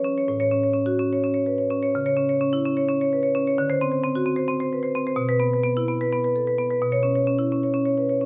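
Set in 7/8 with the eighth note at 258 BPM, the rhythm moves with a rubato give that makes this short contemporary classical fragment feel playful and flowing. A solo marimba, struck with medium hard mallets, carries the whole 8.3-second passage, ranging from A2 up to C#5. Its tone is warm and mid-forward, and it sits up front in the sound. The harmony moves from A6 at 0.3 seconds through an open dominant colour on D to C#m7/B at 6.8 seconds, with unharmonised stretches between these chords. A moderate stone room reverb with a 1.2-second decay surrounds the instrument, and the tuning rests at A4 = 439 Hz in this passage cut from a longer piece.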